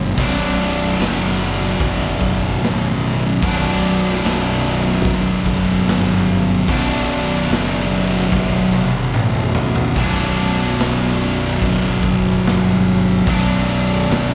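Ominous, sludgy stoner and doom metal, cut from a longer live club performance heard through the venue's PA with light reverb, where a bright, double-tracked overdriven electric guitar riffs up front over two picked fuzz guitars, one warm and very quiet and one dark in the background, while a growly, punchy fuzz bass with overdrive grinds beneath. A raw garage drum kit, gritty and saturated in a pumping stone room, enters at 0.2 seconds and plays a fill from 8.3 to 10.0 seconds.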